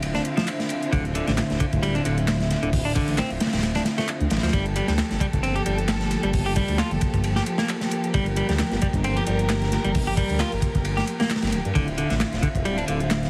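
Breakbeat at 133 BPM in 4/4, this funky, energetic cut from a longer piece in G dorian rides a swung sixteenth-note feel. A crunchy acoustic breakbeat kit sits up front with a gritty, saturated tone, a tight kick, a medium-tuned snare and dark cymbals across hi-hat and ride, while a quieter overdriven analog drum machine adds handclaps and hi-hat. Underneath, a deep, rumbling detuned saw bass with a beating unison quality and fast attack holds the low end, also placed up front. A clean, picked electric guitar plays a compressed riff from 0.1 seconds, colored by tube saturation and tape echo. A dark chamber string ensemble, bowed sul tasto with light vibrato and a soft attack, sustains intimate chords that pump against a sidechain, moving from Dm9 to Gm9 at 4.5 seconds and back to Dm9 at 11.8 seconds. The whole mix carries light studio reverb, a heavily compressed radio character and a layer of vinyl crackle.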